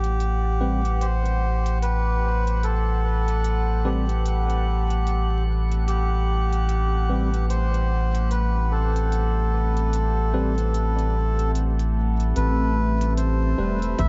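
Ambient dub at 74 BPM in A dorian, meditative and spacious, where a reedy, breathy melodica carries the melody through dub echo over a round, up-front sub bass, a moody, warbling pad under a filter sweep, a drifting glassy texture until 12.4 seconds, barky electric piano stabs, crisp swung hi-hats and a tight kick arriving only at 14.0 seconds, all set in vinyl crackle as Am7 gives way to Am9 in this excerpt from a longer piece.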